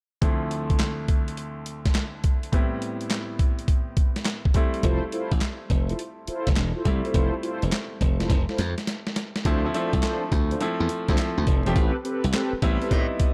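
R&B new jack swing with a slick, confident swagger, built on a gritty, pitched-down boom bap sampler kit of thumpy kick, medium-tuned snare, handclaps and hi-hat under clear, polished concert grand piano chords, before a punchy, glassy slap bass and round, detuned synth brass stabs with chorus and delay join at 4.8 seconds, and a drum fill at 8.3 seconds leads into a new section over dark, digital ambience.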